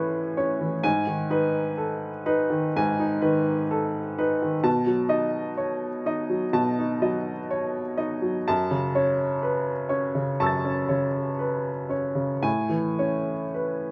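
A clear, woody solo upright piano sits up front in light reverb with an open outdoor air, playing wistful, reflective neoclassical minimalist music at 62 BPM in 4/4 with uneven, rubato beats, moving through Amaj7, G#m, B7 and F#m7 before returning to Amaj7 at 12.4 seconds in this short section cut from a longer piece.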